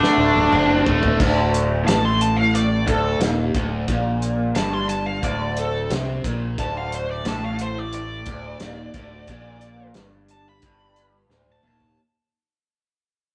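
A straight 4/4 pulse at 89 BPM drives this trippy, dark psychedelic rock clip in D phrygian dominant, cut from a longer piece and opening with a drum fill over a D7 chord before settling onto D5 at 1.2 seconds. The cloth-damped drum kit thuds with a tight kick, a medium-tuned snare, toms, hi-hat and dusky crash cymbals, its saturated, gritty tone rolled off at the top, and it plays another fill from 11.3 seconds. A raw, double-tracked garage guitar sits up front with a bright, overdriven riff run through phaser, while a growling fingered electric bass, also overdriven, joins at 0.2 seconds in its low register. A dark, smooth lead guitar, picked and up front with wah and overdrive, plays from the start and takes a solo from 1.2 seconds that reaches as high as C6. The whole performance sits in a moderate stone-room reverb with a rough rehearsal-room character, and it fades out from 1.2 seconds to the end at 12.0 seconds.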